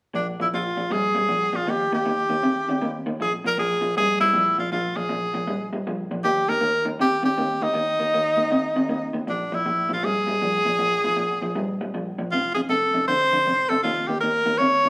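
Blues at 158 BPM with a swung, swaggering yet laid-back feel, this short cut from a longer piece sets a dark, slightly broken-up picked electric guitar riff from a small old amp, lo-fi and up front, beneath a bright, soft-attacked tenor saxophone soloing in jazz style with vibrato over Bb5, Eb and F chords, the band playing live together in one room bathed in a large studio reverb.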